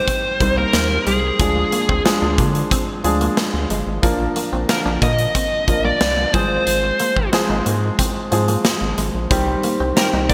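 A smooth, overdriven lead guitar carries the melody up front, its dark, picked tone trailed by digital delay as it sings between Ab4 and Eb5 in this dramatic, nostalgic slice of 1980s-style pop at 91 BPM in a straight 4/4. A polished baby grand piano sits close beside it, filling out the accompaniment over a progression that moves from Cm through Ddim, Bb and Fm/Ab before returning to Cm. A big rock drum kit punches through with a punchy kick, a medium-tuned snare and hi-hat, all bathed in gated reverb, while a rubbery square-wave bass enters at 0.4 seconds with a hollow, nasal, bouncy pluck. Tucked into the background, a clean, twangy electric guitar plays a fingered riff, its compressed tone shimmering with lush chorus and digital delay. The whole short cut, taken from a longer piece, is wrapped in a lush hall reverb and bright digital production that firmly evokes its era.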